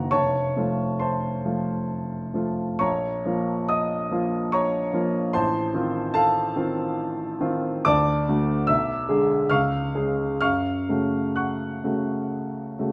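Passionate and brooding, this short passage, cut from a longer work, is a romantic character piece for solo piano in 3/4. It moves with a flexible rubato at roughly 63-74 BPM. A concert grand plays throughout, sounding clear and up front, with a deep bass and an open quality across a range from F1 to F#6. The harmony begins on F and passes through B-flat minor and F7 over A before settling into F# minor from 7.9 s, with the final chords leading through C# to an F# minor arrival at 10.4 s. The piano sits in a wet, large studio reverb that gives the sound a spacious, lingering tail.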